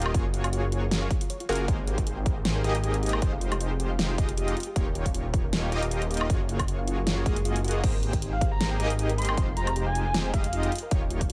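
A punchy, up-front electronic kick drives this playful, lush future bass excerpt, its studio reverb shared with a layered big-room dance kit built around a huge snare, crash cymbal, hi-hat and woodblock in a swung, half-time feel. Beneath it, a thick, saturated detuned saw bass sits low and prominent, chorused and pumping against the sidechain, while a detuned supersaw stab plays a snappy filtered riff with delay. From 0.1 seconds a round, tine-like thumb-piano-style FM pluck traces gentle arpeggios in the background, its dark tone colored by chorus, cassette-tape grit and delay. The harmony cycles through lush extended chords, Gbmaj9, Abmaj9, Fm9 and Eb9. A very quiet electronic swell appears at 7.3 seconds, and an airy, dreamy lead enters at 8.3 seconds, a soft, mellow, full-bodied line with vibrato, chorus and dub echo floating high above. Light reverb and digital ambience lend the whole a polished, spacious sheen.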